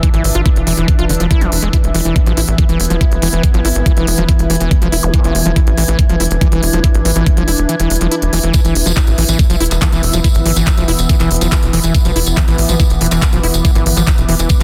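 An up-front, knocking electronic kick and a punchy, wave-folded sequencer bass drive this alien psychedelic trance passage from the start, alongside a squelchy, resonant acid bass riff with delay, crisp hats and handclaps, an evolving, warbling wavetable pad of sustained chords in the background, and a breathy, detuned pad texture high above, with a brief zap at 5.0 seconds, the kick dropping out between 7.7 and 8.5 seconds, and a jingly, close tambourine entering at 8.5 seconds.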